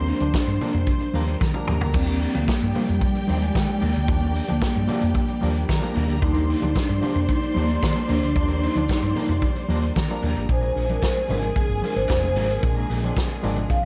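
A straight 4/4 disco groove at 112 BPM in Eb major drives this joyful, danceable cut from a longer piece, built on a vintage acoustic drum kit with a punchy kick, medium-tuned snare and dark cymbals, plus a drum fill at 1.4 seconds. A round, amped hollow-body fingered bass sits firmly under it, while very quiet damped congas and a jingly tambourine add vintage percussion in the background. The vibraphone, played with soft mallets and a fast motor vibrato, carries the ringing, mellow melody and takes a solo from 10.5 seconds as the harmony moves from Ebmaj7 to Bb7. A clear, focused, lush string section plays a second line above it, and a second, smoother string section with portamento enters at 2.0 seconds with sustained background chords. A barky, reedy electric piano with light overdrive and fast tremolo, together with a clean, subdued electric guitar, fills out the accompaniment in a small room with a dark, warm production.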